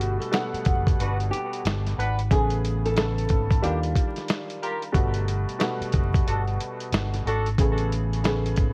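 A short cut from a longer boom-bap hip-hop piece in G major opens at 91 BPM with a gritty, thumpy sampler-style drum kit and a round, punchy fingered electric bass up front, swinging at 62% under a dark, woody upright piano whose slightly detuned keys carry audible action noise on cassette tape. A fingerpicked flamenco guitar melody with finger squeak and delay sounds until 3.8 seconds, while a tight jazz-style horn section adds stabs with light vibrato and delay from 1.0 to 7.5 seconds over Gmaj9, Amaj9 and Ebmaj9 chords. The soulful, nostalgic mood sits in a small room ambience of worn, warbling old tape with vinyl crackle and drifting pitch.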